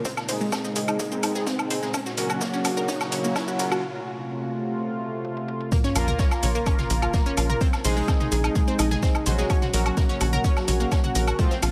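A punchy, overdriven electronic kick sits up front in this dramatic, hypnotic melodic techno cut in Bb minor at 127 BPM, joined by a tight sawtooth sequencer bass with tube saturation, metallic hats, shaker, toms and woodblock from a deep house kit, and a very quiet, gritty vintage kit with a high-tuned snare. Over them, a lush detuned unison pluck spins delayed arpeggios and bold, nasal analog synth brass fires chorused stabs, while a sweeping resonant pad holds sustained chords in the background and a tense, string-like bowed drone hums until 3.8 seconds. A build-up with drum fills, a filter sweep and a faint riser and sub drop breaks briefly before the drop lands at 5.7 seconds with an impact, with the pad, brass, pluck and bass pumping to the kick over Ab/Bb, Gb/Bb, F and Bbm chords.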